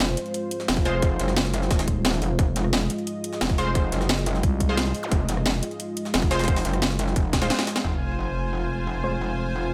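Dark technical drum and bass cut from a longer piece, aggressive and brooding, where a metallic, saturated wobble bass and a moody analog pad with sidechain pumping sit under a cracking, overdriven drum kit layered with a gritty, pitched-up jungle-style kit in the background and a tight electronic kick, while bold, detuned orchestra-hit-like stabs with delay ring out, a thick growling FM bass bursts in at 4.4 seconds, and after a drum fill a band accent at 7.8 seconds brings an impact, a sub drop, a filter sweep on the stabs and a biting, earthy string section with light vibrato.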